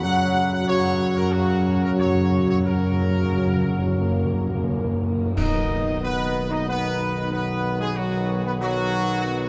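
Majestic and solemn, this classical ceremonial fanfare excerpt in B major moves at 92 BPM in a straight 4/4, with a clear, distant trumpet section carrying the melody over sustained chords from a dark French horn section in the background and a smooth-topped trombone section, a dark solo tuba anchoring the bass, round timpani played with soft mallets filling the opening until 5.3 seconds, bright cymbals and concert bass drum joining from 2.7 to 6.6 seconds, and a band accent at 5.4 seconds marking the arrival on B, all bathed in a huge, echoing reverb.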